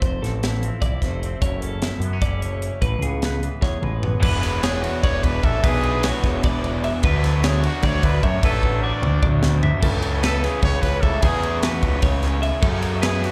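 Heard through a club PA in a small, reverberant room, this wistful, playful math rock and midwest emo excerpt in A major, in 7/8 at 300 BPM, opens with a twangy, fingered electric guitar accompaniment that stops at 5.6 seconds, bright, compressed twelve-string arpeggios soaked in spring reverb and tape echo, a growling overdriven bass, and a crisp fusion kit with a high-tuned snare and punchy kick up front, before a lo-fi, double-tracked garage guitar riff arrives at 4.2 seconds and a warm trumpet with light vibrato carries the melody from 4.6 seconds over chords moving from Fmaj7 to F#m.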